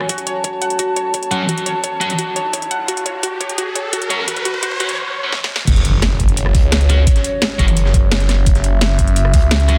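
A dense, heavily limited modern master with light reverb frames this tense, futuristic excerpt of dark technical drum and bass in a straight 4/4. A moody, nasal analog pad holds sustained chords with chorus and sidechain pumping across the whole passage. A warbling, lo-fi pluck plays arpeggios with chorus, sidechain pumping and digital delay until about 4.9 seconds. A knocking electronic kick and a layered kit with a cracking snare, metallic hats, rim clicks and crash cymbals drive the build-up through drum fills, a filter sweep and a riser, while a bright, double-tracked fuzz guitar adds distorted stabs through a low-pass filter and delay. At 5.7 seconds the drop lands with an impact, bringing in a swirling, detuned saw bass up front with phaser and overdrive, and a gritty, compressed breakbeat kit with a high-tuned snare tucked in the background.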